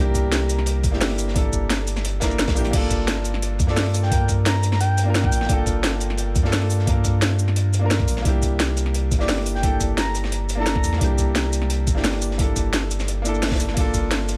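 Liquid drum and bass at 174 BPM in G dorian, rolling and dreamy, taken from a longer piece and moving between C9 and Gm7 chords. A round, sine-like sub bass sits up front beneath a boxy grand piano carrying dub echo in the accompaniment. The drums stack three layers: a gritty, thumpy sampled kick with studio reverb, an up-front electronic kit with a cracking snare, crisp hats, ride, crash and shaker, and a dark, saturated breakbeat kit with a rolled-off top tucked in the background under high-pass filtering. A breathy, flute-like synth lead with chorus, vibrato, tape colouring and dub echo drifts in for short phrases in a high register, first at 3.7 seconds and again at 9.2 seconds. The whole passage sits in a studio ambience that adds to its dreamy feel.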